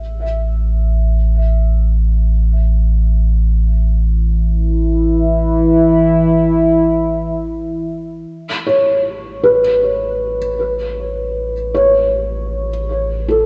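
A dark, warm production wraps this serene ambient passage in a lush hall reverb with a long 2.8-second tail, and the tuning sits slightly low at A4 = 439 Hz. A deep, round sine sub bass holds A1 up front for the whole recording, fading out across the opening section and fading back in during the second, where the harmony shifts from A5 to Aadd9. From 4.4 seconds, an evolving analog drone spanning E3 to E4 blends detuned sawtooth and pulse waves with pulse-width modulation, a moving notch and chorus, arriving on a slow attack and trailing away with a long release. At 8.7 seconds, a felt-muted upright piano enters up front with soft, intimate arpeggios between A4 and C#5. Its boxy, thick-felt tone carries audible action noise and a diffuse ambient delay, and the peaceful mood holds until this fragment of a longer piece is cut off.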